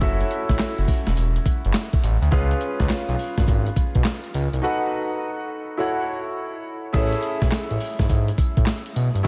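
Confident and slick, this short cut of new jack swing R&B moves at 104 BPM with a 16th-note swing, moving through F#m7, C#7 and B7 and back to F#m7 before settling on Amaj7 at 6.9 seconds, with a break from 4.6 seconds. A dusty, gritty sampler-style kit sits up front with a thumpy kick, medium-tuned snare, handclaps, hi-hat, tambourine and crash, all carrying vintage 12-bit crunch, while a smooth, saturated synth bass blends sawtooth and square tones with a moving notch and fast-attack, sustained notes. Over them, a clear, intimate grand piano accompanies with audible action noise, long sustain, tube saturation and subtle chorus, and the whole mix sits in light reverb.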